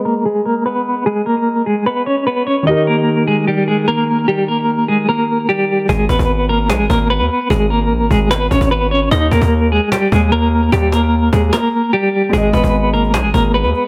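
A small-room ambience frames this dark, melancholic trap excerpt in G# harmonic minor, moving at 149 BPM with a half-time feel as it alternates between G#m and D#. An up-front, clean picked electric guitar carries the melody through tremolo, delay and a low-pass filter, while a mellow vintage grand piano, with audible action noise and long sustain, accompanies it through a low-pass filter as a filter sweep unfolds. At 5.9 seconds the piano drops out as an aggressive, heavy distorted 808-style bass and a snappy, saturated cajon enter beneath the guitar, and the piano returns at 12.3 seconds.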